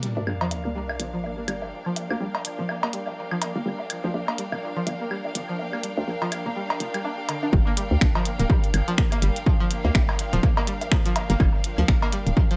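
A hollow, bouncy FM bass sits up front in this quirky, hypnotic minimal techno cut from a longer piece, knocking out a mellow, punchy low line in G minor at 124 BPM with a 16th-note swing and sidechain pumping. A twangy, nasal resonator pluck with a string-like, bright edge plays the riff over a Gm7 chord, treated with chorus, tape echo and a filter sweep through the opening section. Clicky, tape-warm finger snaps and hi-hats tick along beside analog-toned woodblock and cowbell that trail dub echo, while a dark, bowed chamber string ensemble with vibrato and a smooth top pumps underneath. The track opens on an impact from a sub drop, and a detuned, triangle-based gated texture pulses in the background with its own chorus and reverb until the drop. At 7.5 seconds an overdriven, layered kick drum lands hard and punchy in a large-room sound, driving the final stretch of this echo-heavy mix with its light digital ambience.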